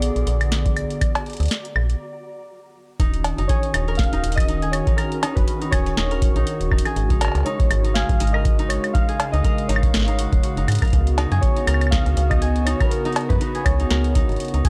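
Dry and gritty, this cassette-tinged cut from a longer IDM piece sits in a digital ambience that feels cerebral and eerie, moving at 121 BPM in Eb minor with a 56% swing on the sixteenths. A booming analog drum machine with a crisp snare, metallic hats, claves and cowbell runs throughout, and a deep electronic kick joins at 0.7 seconds beneath a dark, metallic FM bass roughened by tube saturation. A hollow, flute-like pad holds detuned chords through its chorus, while warbly lo-fi synth keys carry a nostalgic melody through chorus and analog delay. A faint, flickering granular texture glimmers in the background only until 2.0 seconds, leading into a short break. At 3.0 seconds a mellow, ringing concert harp enters with fingerpicked arpeggios echoed by analog delay, as the harmony shifts from Ebm7 through suspended Ab7sus4 and Db7sus4 chords.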